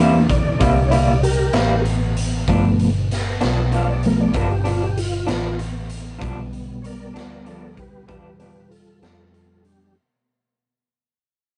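A mellow tonewheel organ takes the solo across this 10-second cut from a longer slow blues, its soft, flute-like tone carrying a touch of key click and turning through a slow rotary speaker with chorus vibrato. The feel is laid-back and gritty, moving at 64 BPM in a straight 12/8 in G mixolydian, with the harmony shifting from C7 to G7 at 2.5 seconds. Underneath, an electric guitar through a small old amp plays accompaniment up front, slightly broken-up and compressed with tremolo, and drops out at 9.2 seconds. A vintage muted fingered electric bass anchors the low end with a dark, round, foam-muted sound. A raw garage drum kit of hi-hat, kick and high-tuned snare enters at 0.3 seconds, saturated and punchy with a rolled-off top in a bright stone room that pumps. The whole passage fades out in a rough rehearsal-room recording with moderate booth ambience and nothing above 10.4 kHz.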